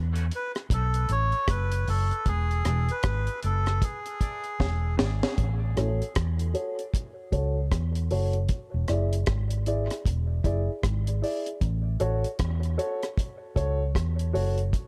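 Dub reggae at 77 BPM in A major, spacious and hazy, built on a round, foam-muted vintage bass and a dry, deep drum kit with a high-tuned snare and tight kick, while a reedy, breathy melodica carries the tune with dub echo until 5.0 seconds, a boxy, mellow grand piano adds filtered, echoing stabs from 2.6 seconds that ride a filter sweep from 5.4 seconds, and a semi-hollow electric guitar flickers very quietly for an instant at 5.8 seconds in this short cut from a longer piece.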